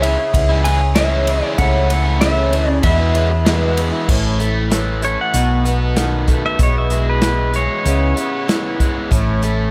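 A lightly reverberant, polished studio sound carries this jangly, warm cut from a longer folk rock and heartland rock piece, moving at a straight 96 BPM in E major and tuned slightly flat to A4 = 436 Hz. A natural country drum kit with a punchy kick and a round, up-front hollow-body bass anchor a shimmering, octave-doubled twelve-string acoustic steeped in lush chorus, a bright, double-tracked overdriven guitar riff, and a reedy, very quiet accordion holding chords. A warm, very quiet grand piano accompanies until about 3.9 seconds, while a dark, slightly broken-up slide guitar with plate reverb and tape echo carries the opening melody until about 3.7 seconds. At 5.0 seconds a clean, compressed pedal steel guitar played with fingerpicks glides in for a solo as the chords move from A through B7 toward C#m7.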